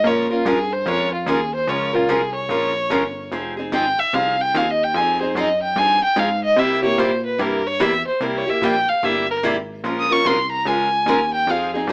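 The recording has an AM radio sound, set in a moderate studio reverb, and this short passage is cut from a longer piece. It is acoustic string swing in the jazz manouche style, bittersweet and virtuosic, with a swung feel. A rich, focused violin carries the melody as a solo for the full 11.9 seconds, one player bowing with vibrato and sitting up front. Beside it, a bright, parlour-style steel-string acoustic guitar picks the accompaniment, its fresh strings showing finger squeak and a boxy body. Underneath, a plucky analog bass gives punchy, funky notes built from sawtooth and square waves, with a fast attack and a filter pluck that decays. The harmony moves through Bbm7, Fm7 and C7 before returning to Bbm7.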